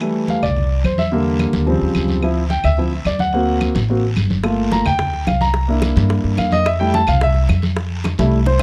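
A deep-bassed, warm concert grand piano solos up front through this lively, danceable Afro-Cuban jazz excerpt at 217 BPM, moving through rich chords from C69 to Fmaj9 over pizzicato upright bass with a woody tone that enters at 0.4 seconds, while thick-skinned congas, background claves and a raspy guiro keep the groove; tight, high-tuned bongos join at 4.4 seconds, and a drum fill arrives at 8.0 seconds in a dark production with light reverb.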